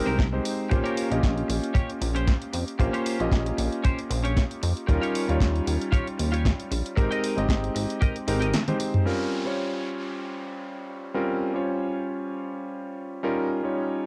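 A tight, dry kick and a tape-softened house kit with a punchy snare, mellow hats and toms drive a groovy, sleek nu-disco excerpt at 115 BPM in 4/4 with a light sixteenth-note swing, set in Bb dorian and moving mainly between Abmaj9 and Bbm69. An up-front, pulse-width-modulated synth bass with tube saturation and a filter sweep sits under a bright, twangy twelve-string electric guitar riff with subtle chorus and delay, while a clear electric grand piano with a clangy low end and analog delay carries the accompaniment throughout. The kick drops out at 8.1 seconds. After a drum fill and band accent at 8.5 seconds, the rest of the rhythm section and the guitar fall away, leaving the piano alone with a faint electronic downlifter from 9.1 to 13.2 seconds, all in a small room on a homespun cassette recording.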